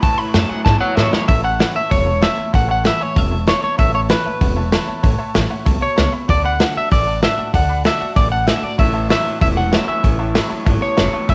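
This retro, rowdy rockabilly excerpt opens with a clean electric guitar solo, joined by a drum fill at 0.7 seconds on a muffled, lo-fi vintage kit with a tight kick, while a thumpy, woody pizzicato upright bass holds down the low end. Up front, a dark, slightly broken-up electric guitar carries the melody with tape echo. Behind it sit a full-bodied steel-string acoustic guitar and a metallic, jangly tack piano, and a bright, twangy electric guitar through a small old amp plays a riff with spring reverb, stopping at 1.3 seconds and returning at 8.8 seconds, all within a light small-room reverb.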